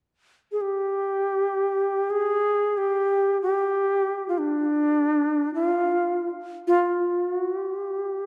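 Japanese traditional music in free time, this calm, austere fragment from a longer piece features a lone end-blown bamboo shakuhachi carrying the melody up front from 0.5 seconds, its airy, reedy tone marked by soft attacks and vibrato, set within the long, wet reverb of a concert hall and a dark production.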